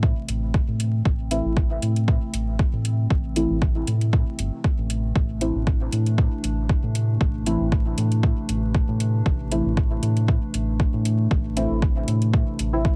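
An overdriven, deep electronic kick sits up front in this hypnotic dub techno piece, cut from a longer track and moving at 117 BPM in 4/4 with a slight 16th-note swing. Beneath it, a round analog bass built from detuned sawtooth, sine and triangle tones holds the low end in A minor, dark and sustained, breathing with sidechain pumping. A gritty, metallic electronic hi-hat joins at 0.3 seconds, while a soft, mellow chord stab enters at 1.3 seconds, its decaying tones colored by ring modulation, chorus, phaser, a moving notch and dub echo. A warbling, nostalgic tape-like pad made of square and triangle waves swells in slowly, sitting low in the mix, lo-fi and warm, with chorus, its own reverb and a pumping pulse. The whole piece stays on a single A minor chord, and the dry room is coated in a layer of vinyl crackle, giving it a deep, hypnotic atmosphere.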